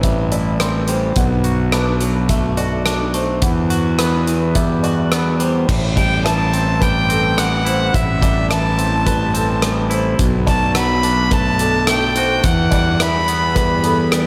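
A straight 4/4 pulse at 106 BPM drives this brooding, melancholic post-rock passage in A dorian, cut from a longer piece. A big rock drum kit sits up front with a punchy kick and a rolled-off top, using crash cymbal, hi-hat, kick drum and rim click, while a fingered electric bass, dark, round and overdriven with fuzz, holds the low end. A clean, twangy electric guitar picks arpeggios through subtle chorus and analog delay, and a felt-muted upright piano adds soft, intimate arpeggios in the background with its own delay. The chords cycle through Am7, Bm7 and Emadd9, and at 6.0 seconds a rich violin enters up front, one bowed player carrying a biting, nasal, earthy melody with light vibrato and analog delay. Plate and small room reverb soak the mix in a dreamy haze.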